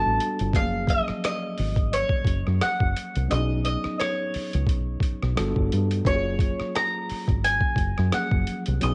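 Sensual and soulful, this short neo-soul and R&B cut moves at 87 BPM with a light sixteenth-note swing in F# major, its dry home-cassette sound giving it a close, intimate feel. An up-front bowl-back mandolin picks the melody on its doubled strings over a worn, slightly out-of-tune tine electric piano that plays lightly overdriven chords through its built-in speakers, moving between Gmaj9, F#maj9 and B69. Beneath them, a dark, round, foam-muted fingered electric bass sits punchy and forward, while a gritty, compressed, pitched-down, tape-warm boom bap drum kit lays down hi-hat, rim click and a thumpy kick.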